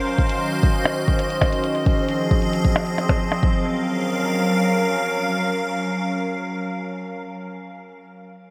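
Drenched in lush hall reverb with a bright 1980s-style digital sheen, this glitchy, playful IDM fragment in Gb lydian moves at 134 BPM as an icy, crystalline glass pad holds detuned chords up front, moving from Ebm7 through Fm7 to Gbmaj7. Beneath it, a bubbling, resonant sawtooth texture steps randomly through its filter in the background, while a deep, tape-warm kick and clicky, delayed hi-hat and percussion blips run under a filter sweep. Around 3.4 s the texture and drums drop away, and the airy pad carries on alone.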